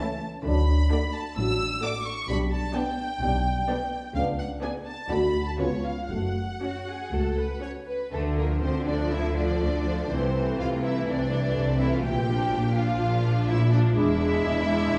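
Classical music for symphony orchestra, this fast romantic movement feels urgent and dramatic, pressing ahead at 116-133 BPM in 4/4 with rubato and turning from F# minor to D minor at 8.1 s. Violins carry a smooth melody with light vibrato over a lush second violin line and focused violas, while a tight, mellow French horn section holds sustained chords until 7.3 s and rich cellos and double basses enter on the bass at 0.5 s. A recital hall reverb places the listener further back in the room.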